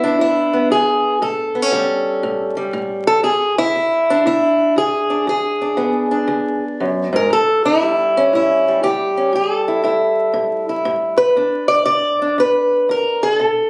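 Captured on a phone in the room, this short cut from a longer piece carries a club's reverb, a layer of vinyl crackle and a compressed sound. It is acoustic country blues in 4/4 with a swung, rollicking and soulful feel. A single fingerpicked acoustic archtop guitar plays alone and up front from 0.0 to 13.7 seconds, its old strings giving a woody, boxy tone touched by light reverb. The part ranges from low E2 up to D5, and the harmony moves between E7 and A7 before settling on an E5 chord at 11.4 seconds.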